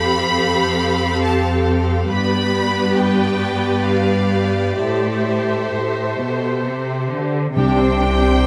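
A lush, up-front cello section anchors this sorrowful, moving cinematic passage in A minor, its smooth, even bowing carrying the bass beneath violas, a symphonic violin section singing the high melody and a studio violin section weaving a second line, all with rich vibrato, drifting in a rubato 3/4 at around 64-70 BPM through Fadd9, G and Am7. At 7.6 seconds the harmony opens onto Csus2 as a clear double bass section, a mellow French horn section in the background, a distant, roomy solo clarinet and calf-headed timpani join in. Closely miked yet set in a moderate scoring-stage reverb, this fragment of a longer piece sounds detailed and spacious.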